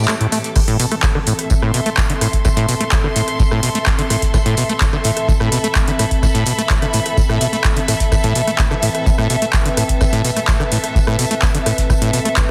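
This gritty, driving acid house piece is cut from a longer track and opens on a brief break. A squelchy, resonant sawtooth acid bass plays a riff with a filter sweep, tube saturation and tape echo, over a dark, warbling, lo-fi pad of detuned sustained chords tinted with chorus and ring modulation. A rich, bowed studio string section adds a smooth, even ensemble texture with vibrato, while a dry acoustic snare and tambourine sit back in the mix with a rolled-off top. A booming analog drum machine comes in at 0.1 seconds with crash, handclaps, metallic hi-hats and rim clicks. At 0.6 seconds the deep electronic kick lands up front as the drop begins, and sidechain pumping makes the pad, bass, strings and percussion breathe in a straight 4/4 pulse. The sound is heavily compressed and radio-like, set in a small room with light reverb.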